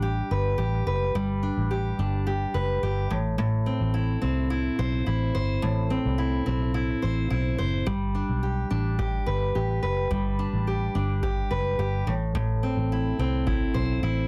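A dense, heavily limited modern master with light reverb frames this sunny, easy-going acoustic pop excerpt, cut from a longer piece and moving between G and Am chords. An up-front, fingerpicked steel-string acoustic guitar with a dark auditorium body carries the accompaniment throughout, over a round, foam-muted vintage fingered electric bass that sounds amped and shadowy. At 7.9 s a deep, tape-warm analog electronic kick drum joins, dropping out at 13.6 s.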